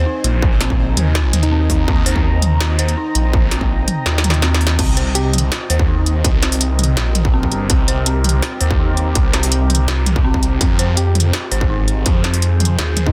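A half-time drum and bass groove at 165 BPM in C minor drives this spacious, cinematic excerpt, with a distorted electronic kick and an industrial kit of clanging snare, smooth hats, crash and toms sitting up front, and a drum fill from 4.1 s, with the kick dropping out at 4.4 s before the second drop at 4.8 s. Beneath it, a swirling, thick phased saw bass holds the low end while a deep, moody ambient pad with 12-bit sampler grit and sidechain pumping sustains chords moving from Ebsus4 through Cm7 to Fm. An eerie, inharmonic bell arpeggiates through dub echo in the background, a faint pulsing gated texture drops away at 4.8 s, and a round, keys-like lead with tape echo drifts in briefly, returning at 11.0 s, all within a dense, dry, heavily limited master.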